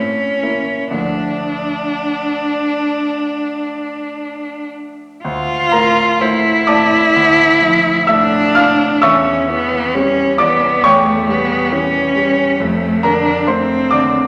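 Bathed in the wet reverb of a scoring stage, this melancholic, yearning romantic classical duo in D minor moves at a rubato 53-69 BPM in 4/4, with an expressive bowed cello up front singing the melody between A3 and F4 in a rich voice shaped by vibrato, portamento and soft attacks, while an up-front grand piano, clear and smooth with a vintage, short-sustained tone, accompanies from D2 to F6 through harmonies that settle on Dm, turn to C#dim/E at 9.0 s and reach Dm/F at 12.6 s, the passage cut from a longer piece.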